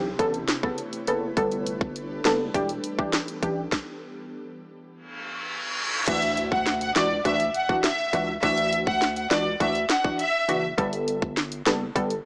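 Summery, sunny dancehall at 102 BPM in D major, cut from a longer piece, where punchy, nasal chord stabs with chorus and a round analog bass ride a tight, up-front island pop drum kit while an ethereal, airy pad with sidechain pumping drops out at 3.7 s, a stop builds with a reverse cymbal at 5.1 s before an impact lands at 6.1 s, and a lush studio violin section with digital delay carries the melody from 6.1 s, all through light reverb and a small speaker sound.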